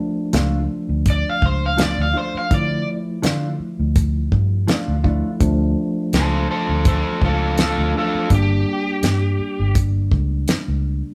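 Recorded live in one room with light reverb, this smoky, mournful straight-eighth soul blues excerpt sets a bright, overdriven slide guitar melody up front over a dry 70s drum kit with a fat snare and tight kick, a dark, round foam-muted bass, bell-like tine electric piano chords, and a mellow, compressed electric guitar whose tremolo stabs stop at 5.3 seconds, with the harmony moving to G minor at 8.3 seconds.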